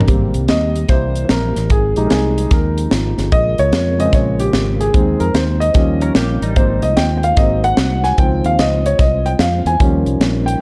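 Jubilant and soulful, this swinging uptempo gospel excerpt features an intimate grand piano soloing up front with audible action noise, backed by a round, punchy fingered bass, a crisp fusion kit with a high-tuned snare and tight kick, a mellow flute-like tonewheel organ turning on a slow rotary speaker in the background, and a brief clean semi-hollow guitar line with analog chorus from 6.0 to 6.8 seconds, all in a dark production with light reverb.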